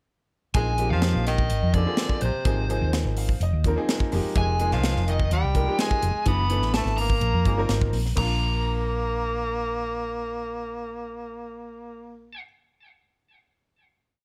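Electric jazz fusion with a funky, slick mood: a crisp, airy drum kit with a high-tuned snare and punchy kick drives a funk groove until 8.3 s, under a round, hollow-body fingered bass riff and clear, boxy piano stabs with a fill at 2.9 s, while a dark, overdriven lead guitar plays a motif-based melody with plate reverb over an edgy tenor saxophone second line with vibrato, all resolving on a final chord from 8.2 s.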